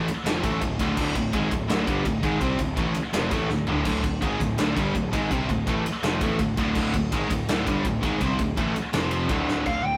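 A punchy, up-front rock drum kit with bright cymbals drives this relentless, aggressive heavy metal excerpt in D minor at 166 BPM in a half-time feel, pushing three background riffing guitars (one biting and double-tracked, one high-gain and bright, one sludgy and dark) over a growly fuzz bass, with drum fills near 3.5 and 9.5 seconds, a shift from Dm to F5 and D5 at the close, and a high-gain lead guitar bursting forward at 9.7 seconds, all captured in a rough rehearsal-room sound with saturated grit and moderate reverb.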